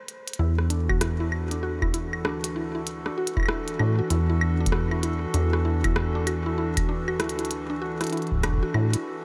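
IDM at 97 BPM in 4/4 with a 16th-note swing, this short excerpt feels wistful and playful, set in a dreamy mix soaked in a long ambient reverb. A glitchy drum kit of claves, clicky hi-hats and rim clicks opens with a brief fill at 0.1 seconds, carrying small room ambience and delay. At 0.4 seconds a hollow, flute-like soft pad sustains an E9sus4 chord with chorus and a gritty vintage 12-bit sampler edge. Alongside it, a woody, round mallet-like synth pluck plays arpeggios through chorus and a diffuse ambient delay. A rubbery, saturated acid bass with a resonant filter pluck sits up front, joined from 0.9 seconds by a dry, deep, tape-warm analog kick.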